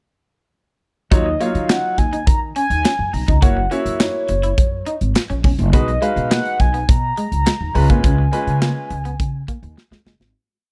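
Early-eighties boogie funk with a funky, late-night mood, this short piece sets a mellow, horn-like synth lead with chorus, slapback echo and vibrato against bright, brilliant grand piano chords, a slightly broken-up, twangy guitar playing a muted single-note line, and a woody, thumpy upright bass carrying a fat syncopated boogie line. A punchy, polished drum kit with hi-hat, kick and a snare layered with handclaps drives the mid-tempo beat up front, in a dry, close small-room sound. The piece moves through Ebm9, Gb7, B6 and Db7 before fading out from 8.0 seconds, with a drum fill from 9.8 seconds closing it at 10.3 seconds.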